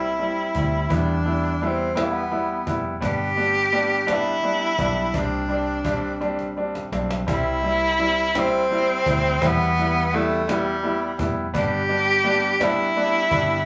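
A rough rehearsal-room recording with tube saturation and a wet studio reverb frames this romantic, heartfelt six-eight pop ballad in C major, taken from a longer piece and moving at 56 BPM in a straight 6/8 feel. Up front, a clear tenor saxophone sings the melody with pop-style vibrato, while a polished baby grand piano supplies present accompaniment over a dark, round, foam-muted fingered electric bass. A snappy cajon played with hard hands and rattling snares keeps time from 0.2 seconds and plays a fill from 6.2 to 7.3 seconds, leading into the repeat of the opening section.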